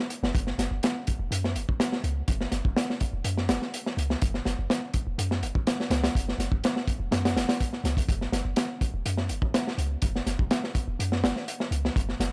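A crunchy, saturated breakbeat kit leads this gritty, raw breaks excerpt at 124 BPM in a straight 4/4, its punchy kick, medium-tuned snare and hi-hat sounding dark and up front with a rolled-off top and a small-room feel. Beneath it, a deep, boomy 808-style bass with a sine core, a noise layer, a fast attack and a decaying body moves between E1 and F#2 from 0.2 seconds onward. The dry, hardware-driven sound carries a rough grit throughout, with little reverb.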